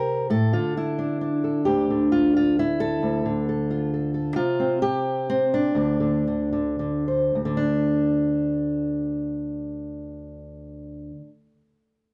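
In a straight three-four lilt that moves between 102 and 136 BPM, this haunting, intimate folk fragment, cut from a longer piece, features a single fingerpicked steel-string acoustic guitar playing solo from start to finish. Set in D minor and tuned to A4 = 441 Hz, the guitar spans D2 to C5 with a dark, boxy tone placed up front, recorded live in one room with light reverb. The harmony moves from Asus4 to Dmadd9, then briefly drops its chords before settling on Csus2/D. The tempo slows between 4.4 and 7.4 seconds, and at 7.4 seconds the opening passage gives way to a second, chordless passage. The excerpt ends at 11.3 seconds.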